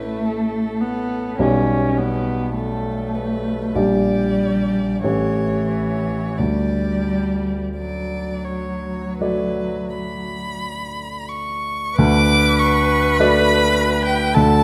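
A moderate scoring-stage reverb surrounds this serene, lyrical slow movement for piano trio, cut from a longer piece and shaped with flexible rubato. Up front, a mellow baby grand with long sustain carries the accompaniment, while a close violin sings the melody with soft attacks, vibrato and expressive portamento, and a woody, more distant cello adds a bowed second line beneath it. The harmony passes through A, G/B and Gm/Bb to an A7 that settles on D at 6.4 s, and the opening material begins again at 12.0 s.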